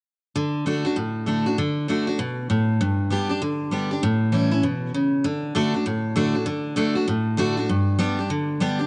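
Rock excerpt, upbeat and rollicking with a swung feel, featuring a solo picked steel-string acoustic guitar that sounds bright and full-bodied with the boom of a dreadnought, sits up front with audible finger squeak, and moves through D, G and A7 in a moderate plate reverb with a soft, rolled-off top end.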